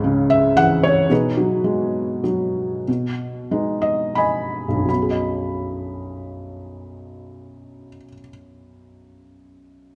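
Classical solo piano in B major, relaxed and sunny, moves in a rubato 3/4 at 76-115 BPM. A felt-muted upright piano sits up front with a soft, mellow, intimate tone and audible action noise, its harmony shifting from C#m to B6 as the pace slows between 1.1 and 4.9 seconds, all set in a moderate scoring-stage reverb with a dark production in this short excerpt from a longer piece.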